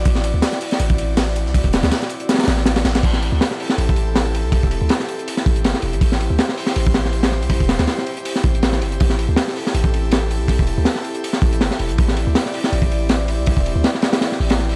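A dry, gritty recording dusted with vinyl crackle and a touch of studio reverb frames this nostalgic yet frenetic drum and bass piece with a jungle edge, cut from a longer track and shifting from Am to Am7 at 3.0 seconds. Up front, a crunchy, saturated acoustic breakbeat kit with a punchy kick, high-tuned snare and dark cymbals drives the whole passage alongside a deep, mellow sine 808-style bass warmed by tube saturation. Behind them, a compressed sampler-style kit re-recorded in a small room adds filtered hats and snare until 3.0 seconds, while a soft, breathy detuned pad with a bright noise layer and chorus holds sustained chords throughout.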